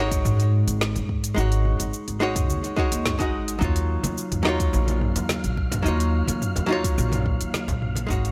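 Light digital ambience and a touch of reverb frame this smooth, relaxed sunset chillout excerpt in Eb minor at 107 BPM, moving in a straight 4/4 from Ab7sus4 to Ebm9. Up front, a clean, compressed hollow-body archtop guitar picks its accompaniment through a delay over a dark, thumpy pizzicato upright bass with gut strings. A deep electronic kick and a layered deep house kit of woody snare, hi-hat, cabasa and toms carry the groove, with ringing hand-struck congas joining in the background at 4.0 s and an airy, breathy wind-like tuned texture with its own reverb at 4.1 s, before a fade-out begins at 6.6 s.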